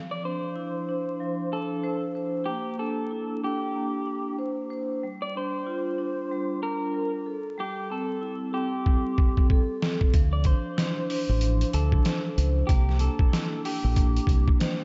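Boom-bap hip-hop with a moody, reflective air, this piece moves at 94 BPM in D minor with a swung 16th-note feel, and it is cut from a longer piece. A mellow vibraphone played with soft mallets opens the track, its ringing, metallic tone carrying a slow motor vibrato and an airy, tape-tinged softness as it sounds out chords that drift from Dm9 through C9, Bb6 and Am7. Above it, a slightly broken-up electric guitar from a small old amp picks out the melody, compressed and bathed in spring reverb and analog delay. At 8.9 seconds a gritty, pitched-down sampler-style drum kit arrives with a fill, bringing a thumpy kick, a medium-tuned snare and hi-hat to the front of the mix. A dark, round dub bass follows at 10.1 seconds, fingered and sitting up front alongside the drums. The whole mix feels dreamy and soaked in a lush hall reverb, dusted with vinyl crackle and rolled off at the top for a hazy, muted sheen.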